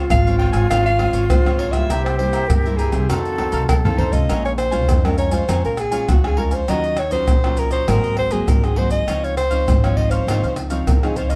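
A straight 4/4 samba-and-choro groove at 100 BPM, driven up front by deep surdo, pandeiro, tamborim and maracas played with soft hands in a live room, carries this bittersweet yet lively excerpt: a breathy, intimate soprano saxophone leads with dark vibrato and scooped, jazz-style notes over crisp picked cavaquinho, full-bodied fingerpicked nylon-string guitar and woody pizzicato upright bass, while a mellow, slightly unsteady silver flute adds a tongued second line through the opening section until 4.3 seconds, when a drum fill starting at 3.7 seconds moves the music from F minor into Bb minor, all within a dark production with light reverb.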